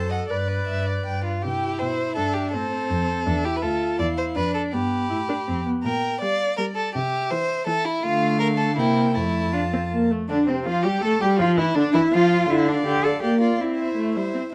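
A quick, cheerful string quartet movement in the classical style begins with all four players together, moving at 163 BPM in a straight 3/4 lilt. The melody violin, clear and smooth with a close, even tone, sits in the background beneath its partners, while the second violin carries a focused, up-front line with vibrato. The viola's rich, bowed accompaniment and the cello's focused bass, also up front, give the texture a full middle and firm footing. The music starts in C major and moves into F major from 5.8 s, passing through chords such as Dm, C7 and Gm7/Bb. Light reverb and a dark, warm production frame this lively excerpt, which is cut from a longer piece and closes on C at 13.6 s.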